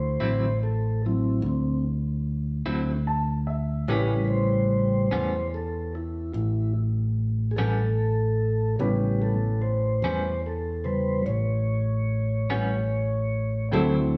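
A big, reverberant room surrounds this swaggering, gritty slow blues in A mixolydian, cut from a longer piece and played live at 49 BPM in a straight 12/8. A soft, flute-like tonewheel organ with key click and a slow rotary speaker takes the lead throughout over a punchy, up-front fingered bass and a dark, compressed clean guitar with tremolo. A smooth, vintage grand piano slips in a fill from 2.7 to 3.9 seconds as the harmony moves from D9 to A9.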